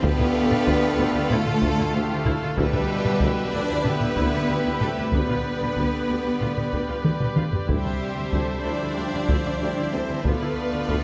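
A steady, straight 4/4 pulse driven by a close, dry taiko ensemble struck with heavy sticks propels this heroic, relentless cinematic orchestral cue, cut from a longer piece, with a drum fill at 7.0 seconds. Over it, a dark violin section carries the melody in the background with expressive vibrato and portamento, while a bright, focused second violin line sits close and forward above it. A distant, smooth viola section and a close, rich cello section fill out the middle and bass, joined by a soft-attacked double bass section and a very quiet solo tuba with light vibrato anchoring the low end. Mellow French horns in a tight section and a shimmering pipe organ on celeste string stops hold sustained chords moving from Dm through Em7/D, G/D and C/D back to Dm. Very quiet timpani played with medium mallets on calf heads appear between 2.6 and 6.0 seconds, and a moderate scoring stage reverb gives the orchestra a lush, spacious sheen.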